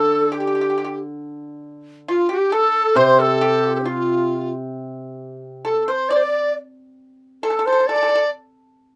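A xiao, large dizi, pipa and hammered dulcimer all sound together from the opening moment of this brief, graceful and wistful passage of Chinese traditional chamber music, taken from a longer piece. The end-blown bamboo xiao carries the melody with an airy, expressive tone, its vibrato and tongued notes set back at a distance. Beside it, the large dizi plays a second line up front, pure and crisp in attack, with the buzz of its membrane and its own vibrato adding colour. The pipa adds a further line, dry and percussive under the fingerpicks. Low in the texture, the hammered dulcimer supplies a bright, shimmering, ringing accompaniment until it drops out at 5.6 seconds, leaving the winds and pipa to carry on in the unhurried rubato. A modest booth ambience surrounds the ensemble.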